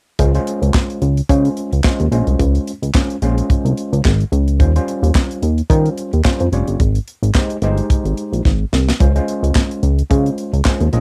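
A glossy, chorused synth bass, a tight funk drum kit and a worn, slightly out-of-tune tine electric piano all start together at 0.2 seconds in this smooth, feel-good early-eighties boogie funk clip at 109 BPM, swung on the sixteenths over Dbmaj7, Eb13 and Abmaj7. Up front, the bass's mellow pulse and sawtooth tones carry a quick filter pluck and transformer saturation, while the dry, airy drums punch with a tight kick, a medium-tuned snare, hi-hat and handclaps, and a drum fill arrives at 8.4 seconds. Lower in the mix, the piano sounds lightly overdriven through built-in speakers, and the whole cassette home recording sits in light reverb.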